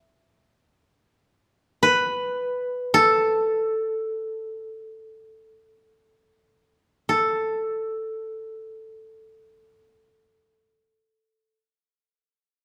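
Japanese traditional chamber music unfolds here in free time, a solitary and meditative passage cut from a longer piece. A lone koto carries everything, plucked with fingerpicks and sitting up front, its tone woody, dry and warm. The instrument stays within a narrow span from A4 to E5, and it plays until 11.6 seconds. Across the opening stretch to 7.1 seconds the pace gradually slows before a second section begins. A moderate recital hall reverb surrounds the strings, giving the playing a gentle sense of space.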